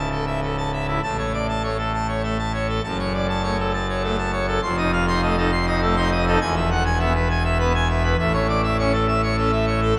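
Classical organ toccata in triple time, jubilant and brilliant, cut from a longer piece: a solo pipe organ on full organ, its mixtures ringing with a majestic, romantic voicing placed up front, spans C#1 to C6 and moves from A/C# through A, F#m, F7 and E before settling on A at 8.2 seconds, heard through a resonant church reverb.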